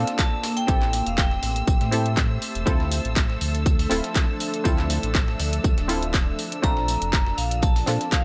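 A bright, metallic vibraphone struck with hard mallets rings out a dub-echoed melody at the start and returns at 6.6 seconds in this late-night deep house excerpt, set over a punchy, up-front electronic kick, layered house handclaps and hi-hat, a very quiet, gritty sampler-style kit with snare, hi-hat and tambourine, a deep sine sub bass with octave, muted, detuned sawtooth dub chord stabs with chorus and echo, and a background haze of a warbling, nostalgic lo-fi pad with phaser, a blurred granular cloud pad and a distant, lush bowed violin section, with sidechain pumping on the bass, stabs and both pads as the chords move from Bbmaj7 through Am7 to Dm9.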